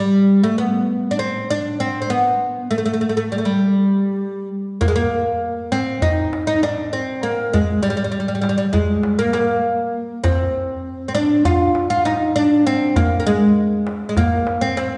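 A bright, woody fretless oud opens this festive, stately Turkish makam ensemble piece alone in G makam rast, plucked with a plectrum on its double strings and set up front, before the music moves to C makam nihavent at 4.8 s, where a large clay-shell darbuka with natural skin enters under hard hands at a lower level, all in a straight 9/8 at 199 BPM counted in eighths and bathed in a wet, hall-like reverb with a softened top end.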